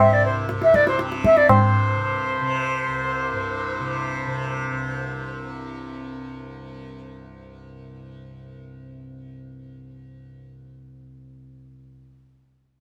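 Devotional and serene, this short fragment of Hindustani classical music sits in C major with a 7/4 metre at 120 BPM, and the tempo gathers speed over its first 5 seconds. A bright, reedy bansuri carries the melody up front, its pure bamboo tone colored by vibrato and tongued notes yet set with a distant air, playing from the start until 5.4 seconds. Beneath it, a tanpura holds a low, buzzing drone that shimmers with softly plucked acoustic strings and sustains to 11.9 seconds. A pedal harmonium adds a brief, breathing second line in the background, mellow and vintage in character, ending at 1.6 seconds. Tabla enters at 0.5 seconds, high-tuned and ringing, close and dry in the foreground, within a moderate studio ambience that suggests the musicians playing together in one room.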